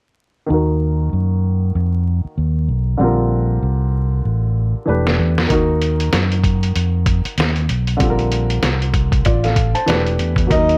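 Swung sixteenths in 4/4 carry this relaxed jazz-hop clip from a longer piece, where a mellow, vintage grand piano under a filter sweep and a round, amped fingered electric bass move through minor and major-ninth chords over vinyl crackle and light reverb, until a drum fill at 4.9 seconds brings in a muffled, compressed lo-fi sampler kit with a thumpy kick at 5.1 seconds, and a breathy alto saxophone with vibrato slips in on a single scooped note at 10.5 seconds.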